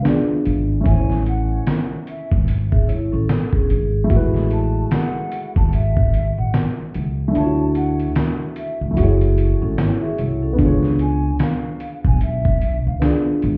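Swung 16ths at 74 BPM open this melancholic, reflective lo-fi hip hop excerpt in F# minor, where a gritty, compressed, pitched-down trip hop sampler-style drum kit with a thumpy kick, medium-tuned snare, hi-hat and handclaps sits up front beside a woody pizzicato upright bass and a dark, mellow upright piano, under a hollow, pure, close-miked silver flute melody with vibrato and analog delay; a ringing metallic vibraphone played with its motor off adds brief second-line phrases from 2.7 s, the kick drops out from 7.3 to 10.6 s, and the mix is heard as if muffled through a wall, with club reverb and vinyl crackle.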